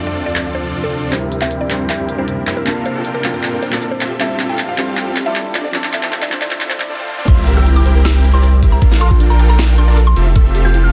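A half-time pulse at 156 BPM drives this euphoric, playful future bass excerpt, cut from a longer piece and tuned to A4 = 444 Hz, moving through Dm7, C7, Bbmaj7 and Fmaj9. From the start, huge, lush supersaw chords carry the riff, pumping with the sidechain while a filter sweeps them through the build-up from 1.1 to 7.3 seconds. A dark, intimate baby grand piano with audible action noise and tape echo and a shimmering, ethereal pad with an octave-up glow fill out the harmony. Above them a woody, mallet-like FM pluck sings the melody from the background, colored by chorus, phaser and delay. A tape-warm trap kit with a sharp, softly clipped snare, crisp hats, handclaps and crash plays a drum fill under the rise, joined by a very quiet riser and impact. After a brief break, the drop lands at 7.3 seconds, where a knocking electronic kick and a thick, saturated sub bass sit up front, a gentle, full-bodied pluck adds arpeggios, and the dense, heavily limited master keeps the sound dry.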